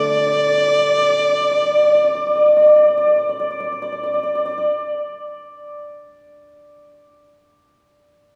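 A rich, up-front erhu sings the melody with vibrato and portamento in this graceful, tender fragment of Chinese traditional chamber music, its single bowed voice ending at 2.8 seconds. A bright, shimmering hammered dulcimer carries a second line until 7.0 seconds, while a silvery guzheng plucked with fingerpicks rings softly underneath until 5.9 seconds. The fragment unfolds in free rubato within the resonant bloom of a concert hall.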